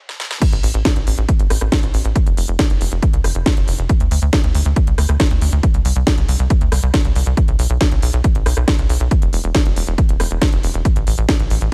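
Uplifting trance with an emotional, soaring mood, cut from a longer piece, opens on a brief stop and a drum fill from the overdriven techno kit with its cracking snare and smooth hats, before the drop at 0.4 seconds brings in a heavy, up-front electronic kick, joined a moment later by a tight, punchy sawtooth sequencer bass with a filter pluck and sidechain pumping, all in a dry, high-passed mix.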